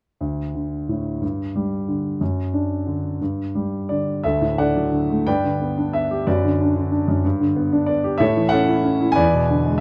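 A smooth, vintage-toned grand piano sits up front and plays alone from 0.2 to 9.8 seconds, spanning D2 to G#5 in this peaceful, lyrical classical piece in D major at 60 BPM in 6/8 with uneven, rubato beats, its harmony moving into a new section at 4.2 seconds through G, B minor and A before arriving on E7, set in a booth's moderate ambience with a dark, warm production and cut from a longer work.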